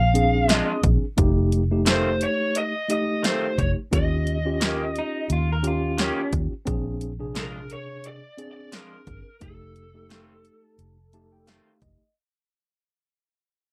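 A dry, close 1970s-style studio sound with light reverb frames this swaggering, rollicking straight-eighth soul blues at 87 BPM, cut from a longer piece and fading throughout, where an overdriven, lo-fi lead guitar from a small cranked amp carries the melody over a dark, round, foam-muted fingered bass, a punchy, layered electronic dance kit with bright hats, a mellow tine electric piano that adds a fill from 10.8 seconds, compressed, slightly broken-up guitar stabs, and a brief twangy second guitar line at 5.0 seconds, across changes of Bb7, F7 and Eb7.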